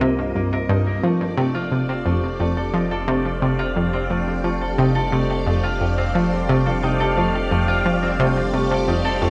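An analog pluck sits up front from the start, playing a round, detuned sawtooth riff with chorus and delay, over lush string-machine chords with a slow attack and ensemble chorus, ringing fingerpicked harp arpeggios with delay, and a deep sine sub bass. This hypnotic, expansive slice of sequencer-driven space music moves at 88 BPM in a straight 4/4, tuned to A4 = 442 Hz, with the harmony shifting from Cm7 to F7. A moderate plate reverb lends the mix, including the vintage, full-bodied strings, a spacious glow through the 9.3-second excerpt.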